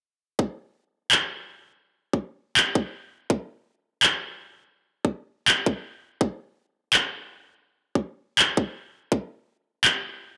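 A tight, high-passed electronic kick drum runs from 0.4 to 9.2 seconds, joined at 1.1 seconds by layered electronic handclaps that sit up front, both re-recorded in a small room and wrapped in moderate spring reverb, giving this heavy, tense drum and bass passage, cut from a longer piece, a swung, half-time feel in 4/4.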